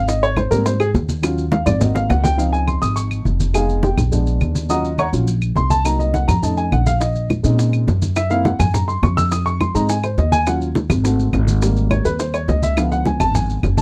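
Afro-Cuban jazz at a brisk 208 BPM in 4/4, this lively, danceable excerpt sits in Db major and is cut from a longer piece. A dark, intimate baby grand piano sits up front with short sustain and audible action noise, taking a solo across the whole passage over chords such as Abmaj9, Bb7b9, Gb7#11 and Ab7b9. Beside it, a woody, thumpy pizzicato upright bass on gut strings holds the low end, also up front. Low-tuned congas played with soft hands give a thick-skinned pulse from the background, joined by round bongos that drop out after about 2.3 seconds and return at 7.0 seconds, with a drum fill arriving at 1.5 seconds. Dry, close claves and grainy, band-limited maracas with a vintage character complete the percussion. The sound is that of a close 1970s-style studio recording with little reverb.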